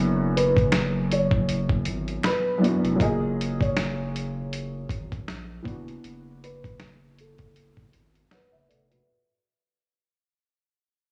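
A worn, woody upright piano sits up front with cassette-tape grit and slightly detuned, action-noisy chords moving between D69/F# and F#maj9, while a second, felt-muted upright piano carries a soft, boxy melody through analog delay. Underneath, a thick, saturated sine sub bass holds sustained low notes, and a muffled, pitched-down sampler-style drum kit swings with a thumpy kick, hi-hat and medium-tuned snare; a very quiet, close finger snap appears only from 0.7 to 2.4 seconds. This cosy, dreamy lo-fi hip hop fragment is cut from a longer piece, and a filter sweep and fade-out run across its whole length.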